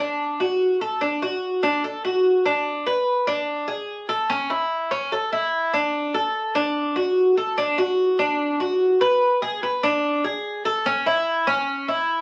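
A sunny, relaxed Latin piece in straight 4/4, heard here as a short cut from a longer performance. A Cuban tres plays alone throughout, from 0.0 to 12.2 s, its picked double strings giving a warm, metallic ring, with some courses doubled at the octave for extra shimmer. The instrument sits up front in the mix and stays in a compact middle register, between C#4 and B4. The music moves through two sections, the second beginning at 7.6 s. The sound carries the patina of a very old 78 rpm record, with vinyl crackle and lossy compression artefacts, while a wet studio reverb adds a short, glowing halo around the strings.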